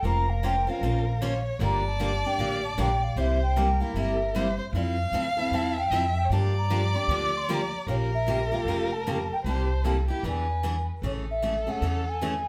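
Acoustic string swing in the jazz manouche style, lively and charming at 153 BPM, with a mellow, airy alto ocarina carrying the tongued, vibrato-laced melody over a dark, bowed violin line with expressive portamento, a bright, full-bodied picked steel-string guitar and a woody, thumpy pizzicato upright bass up front, all set back in a wet studio reverb as the chords move from Bbmadd9/F through Gm7, C7 and Fmaj7 before shifting to Amaj7 at 11.0 seconds.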